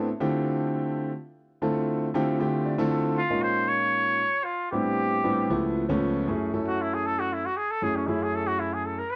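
Set in 6/8 at 78 beats per minute on the dotted quarter, with a straight feel, this short jazz excerpt moves with an intense, driving mood. A concert grand piano carries the accompaniment from the start, its tone clear and natural, with deep bass and long sustain, voicing rich chords such as Dm11, Bbm7, Am11 and an altered C#7 before settling on F#m9. The piano steps forward with a brief fill at 2.4 seconds, and the trumpet with a straight mute enters at 3.2 seconds, nasal and breathy, shaded with light vibrato and scooped notes in a jazz style. From 6.3 seconds the muted trumpet takes a solo over the new harmony, sitting up front alongside the piano. The sound is a dry, close 1970s-style studio recording touched with studio reverb.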